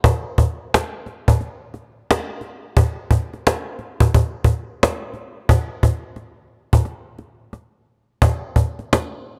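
A woody, acoustic cajon sits close and dry up front, its faint snares adding a light rattle in this short hip hop cut from a longer piece. The groove moves at 88 BPM in 4/4 with a loose swing on the sixteenths, lending a lazy, hazy lean to the pulse. The mood is melancholic, carried entirely by this lone percussion part from the start until 9.1 seconds. The recording has a dry, gritty hardware character touched by a light studio reverb. A first passage gives way to a second at 5.5 seconds.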